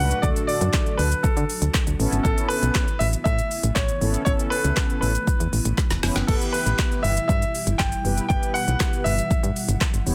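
A dense, heavily limited mix with light digital ambience carries this summery, upbeat dance-pop passage at 119 BPM in a straight 4/4, moving from D to Aadd9 and then to Em at 6.3 seconds, just after a drum fill from 5.8 to 6.3 seconds. Up front, a clear baby grand piano plays the melody through digital delay, while a punchy, round FM bass with sidechain pumping and a deep house kit with a deep kick, woody snare and smooth hats drive the groove. Beneath them, a mellow, brassy sawtooth synth brass with chorus supports the harmony, an ethereal, airy pad sustains chords in the background with ensemble chorus and pumping, and a crisp group handclap from 0.7 seconds is barely audible.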